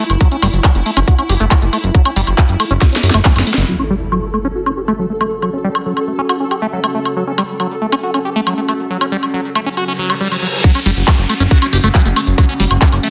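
Hypnotic and intense, this psychedelic trance excerpt sets a squelchy, resonant acid bass riff, swept by its filter and colored with phaser and delay, over a pulsing gated chord texture, a fat detuned analog bass, a tight electronic kick and a drum and bass kit of cracking snare, hi-hat, handclaps, woodblock and crash, while an electronic impact at 3.7 s ushers in a deep, moody ambient pad before a reverse cymbal and downlifter lead into the drop at 10.6 s, where the kick and analog bass return inside a dense, heavily limited master.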